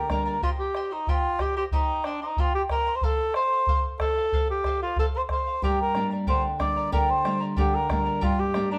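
Wet stone-room reverb surrounds this short, wistful yet festive Andean folk ensemble playing live in 2/4, where a dark, up-front cor anglais sings the melody in classical style with light vibrato, a bright, shimmering fingerpicked charango with double strings accompanies, a round, close bombo keeps the beat, and a warm, fingerpicked flamenco guitar sounds briefly at the start before returning at 5.6 s as the chords move from Cm through F to Gm.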